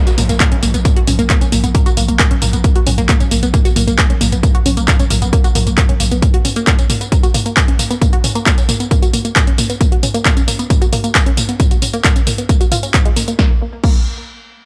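Driving in a straight 4/4, this relentless, intense peak-time techno cut opens with a background downlifter. An overdriven, heavy electronic kick sits up front beside a tape-warm drum kit of punchy snare, hi-hats, handclaps, tambourine, toms and crash, while a growling, buzzy 808-style bass with overdrive and a low-pass filter drops out at 6.2 seconds. Throughout, a lush, detuned sawtooth unison pluck riff, carrying tube saturation, sidechain pumping, digital delay and a filter sweep, rides a dry, close mix.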